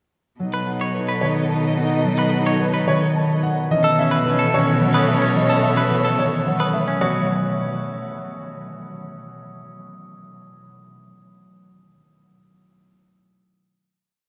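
Hypnotic and bright, this short minimalist classical piece in 3/4 at 109 BPM sets a warm concert grand piano melody with audible action noise over repeated short cells from mellow thumb-plucked harp and clean, compressed semi-hollow electric guitar arpeggios, joined at 3.8 seconds by bell-like glockenspiel, while a vibrato soprano saxophone pulses in the background, a lush string section holds swelling chords, and a focused solo cello sustains long bass notes, moving from B7 to A69/B and back to a final B7 chord that rings out in a cathedral-like reverb until 8.7 seconds.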